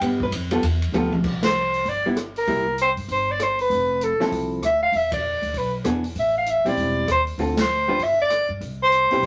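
A breathy soprano saxophone carries the melody from 1.4 s, with soft, scooped notes, gentle vibrato and an intimate, whispered tone, in a playful, sophisticated excerpt of small-group swing and bop at 195 BPM in C major. A dark, clean hollow-body electric guitar plays picked, compressed chords up front, while a woody pizzicato upright bass and an open acoustic drum kit with dark cymbals and a boomy kick keep the swing going. A drum fill at 0.9 s leads into full-band accents, and moderate studio reverb and vinyl crackle give the sound a vintage feel.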